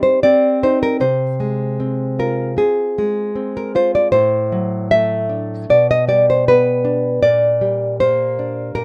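A dry, rough home-demo sound places a lone nylon-string guitar up front, its dark, acoustic tone carrying audible finger squeaks. This wistful, melancholic romantic piece for solo classical guitar is fingerpicked at a rubato 78 BPM in 4/4, tuned to A4 = 441 Hz, and spans A2 to E5. The brief excerpt, cut from a longer piece, moves from C minor through Fm/C, D7/A and G/B before settling on Gm/Bb around 7.2 seconds.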